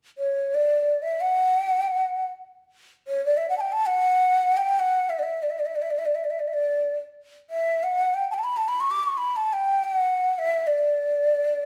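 Passionate and festive, this brief cut from a longer Persian piece in free time sets a breathy, mellow ney up front, carrying an expressive, vibrato-laden, tongued melody in the D dastgah mahur spanning C#5 to D6 between 0.2 and 11.7 seconds, framed by the moderate reverb of a stone room where the band plays live together.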